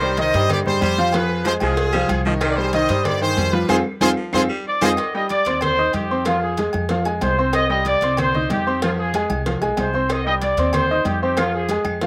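A brilliant, punchy horn section leads this fiery, danceable salsa excerpt at 188 BPM in C minor, carrying the melody for the first 4.9 seconds while a raspy, gritty baritone saxophone sits behind it on a second line with a slapback echo. A bright, polished upright piano stays up front throughout, joined by the woody, dark pizzicato of an upright bass. In the background, congas, ringing agogo bells and timbales, and a round, low-tuned cowbell with its own slapback echo drive the rhythm, while very quiet, distant claves come and go. A band accent and drum fill close the opening phrase, and a tight trumpet section with light vibrato and slapback echo takes over the melody from about 4.7 seconds, riding the alternating C minor and F minor chords. The sound is dry, with little reverb and an open-air feel.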